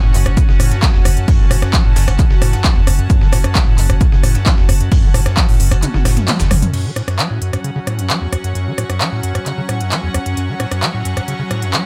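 A straight 4/4 pulse at 132 BPM drives this relentless peak-time techno excerpt in F# minor. A punchy, tape-warm electronic kick sits up front until it drops out at 5.8 s for a drum fill. An overdriven techno kit of crash, handclaps, smooth hats, rim click and toms runs throughout, while a compressed sampler-style soul kit of hi-hat, shaker and snare sits in the background for the first half. A squelchy, resonant square-wave acid riff pumps beside a deep, saturated sine sub bass, and a clear, floating string section plays soft, bowed sul tasto lines high above. From 7.5 s a tense, detuned, granular drone swarms in the background, all within a dry, loud mix.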